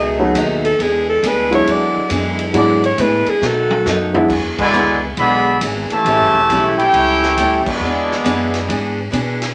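A brassy, joyful stretch of big band swing, cut from a longer piece, moves at 137 BPM in 4/4 with a firm swing on the eighth notes and dominant-seventh harmony centred on E. A breathy, whispered alto saxophone carries the opening melody up front as a solo with scooped notes and vibrato, over tight sustained chords from the saxophone section, a short-sustain baby grand piano, a bright, boxy picked archtop guitar and a woody, thumpy pizzicato upright bass on gut strings. The drum kit, heard in a big room with a punchy kick and medium-tuned snare, plays a fill from 3.4 s that leads into the second section at 4.3 s, where the key settles into E major. There the saxophones and piano drop out, and a clear, smooth-topped trumpet section takes the melody up front while a tight trombone section with light vibrato carries a second line beneath it, the whole band hitting accents at 4.5 and 7.6 s. Wet studio reverb gives the ensemble a lively, roomy sheen as guitar, bass and drums keep swinging to the end.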